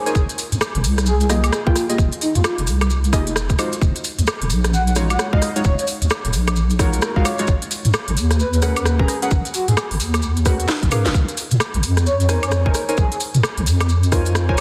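UK garage in a skippy, late-night two-step vein, this excerpt sits at 131 BPM in Bb minor, its sixteenths swung so the groove lurches and skips. A deep, wobbling bass built from triangle and sine tones sits up front with tube saturation and chorus, joined by a tight, tape-warm electronic kick that was re-recorded in a large room. The garage kit adds crisp hats, rim clicks, woodblock and a cracking snare with soft clipping, while grainy, mellow maracas add a small-room shimmer beneath. Over this, mellow, nasal chord stabs with a sub octave and filter sweep move through Fm11, Ebm11, Abm11 and Bbm11, colored by chorus, cassette tape and dub echo. A breathy, flute-like lead with vibrato floats a melody between Eb4 and Gb5 through lush chorus and dub echo, and a drum fill at 10.7 seconds leads into the final chord. The dense, heavily limited master carries light reverb, digital ambience and a layer of vinyl crackle.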